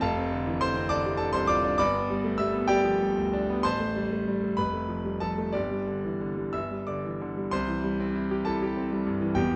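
A dark, warm production places a solo concert grand up front in a moderate stone room whose reverb lingers for about 1.2 seconds. This is a virtuoso classical piano study in 6/8, played with free rubato and a brilliant, heroic character. The piano spans from deep bass notes to a bright, present treble, its tone bright enough to cut through the shadowy surroundings. The harmony moves from Dm7/F through G, Am7, F and a bare G5 before arriving on C at 7.5 seconds, where a new section begins. The recording is a short cut from a longer piece, ending at 9.6 seconds.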